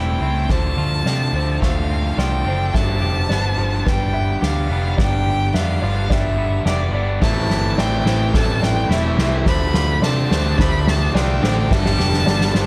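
Melancholic and cinematic, this post-rock build-up sets a distant, focused violin melody over muted piano with audible felt and action noise, a hollow-bodied clean guitar picking arpeggios, and a bright distorted guitar riff, all tied to a round, punchy picked bass up front. Soft mallets drive the boomy acoustic kit's fill from 0.5 seconds, while a crunchy overdriven guitar with spring reverb joins the riffing at 7.2 seconds. Slapback echo trails the violin, piano and clean guitar, and the whole excerpt sits in a small room with a dark, warm production as chords move from Dm7 through G7 and Am7.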